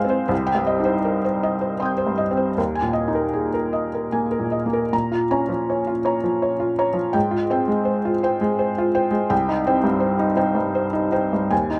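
A felt-muted upright piano plays alone from the start, soft and intimate, its thin felt and audible action noise sitting up front in a small room with a moderate, short reverb. This wistful, reflective fragment of neoclassical minimalist piano moves in a rubato 3/4, drifting from Cm through Ebsus4 before a new section begins at 4.9 s on Bbm, passing through Fmadd9/Ab and returning to Cm at 9.3 s. The piano spans from low bass to high treble, and the rough home-demo mix keeps it close and unpolished.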